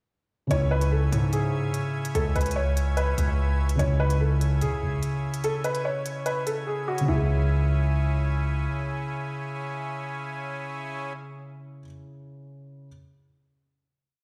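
Heard through a big sound system in a bare room with a large studio reverb, this tense, cold drill piece in C# minor moves at 146 BPM with a half-time feel, its crisp electronic hi-hats skipping with fast rolls above a distorted, heavy 808-style bass that sits up front with long sub notes and pitch slides. A worn, woody, slightly detuned upright piano with delay carries a looping melody like a sampled loop, while a felt-muted upright piano holds soft, dark chords in spread voicing and a reedy accordion adds a full sustained pad. After a break from 5.4 seconds, the track settles at 7.1 seconds into a final C#m chord, with the muted piano ringing on until 12.9 seconds.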